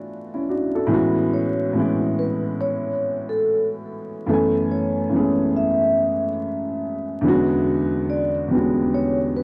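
A dark, woody upright piano opens this hazy, nostalgic hip hop fragment, sitting up front with audible action noise and a cassette-dulled, filtered tone as it moves through D69, Amaj13, F#m11 and E13 in F# minor at a relaxed 71 BPM with a swung 16th feel. At 1.3 seconds a mellow vibraphone played with soft mallets enters on the melody, its airy, metallic ring, slow motor vibrato and analog delay softened by a low-pass filter. The whole clip, cut from a longer piece, is bathed in a moderate plate reverb and worn, warbling old tape with vinyl crackle and drifting pitch.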